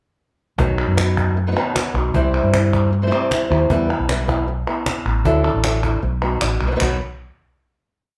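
Fiery and mournful, this short flamenco piece in B phrygian dominant moves at 154 BPM, with a dark, up-front flamenco guitar fingerpicking and rasgueado strumming with taps on the top over a round, punchy fretless electric bass playing a syncopated figure, a woody cajon with faint snares, and crisp, distant palmas hand claps marking the cycle, all played together in a small, reverberant room as the groove runs from 0.6 seconds to a final chord at 6.8 seconds.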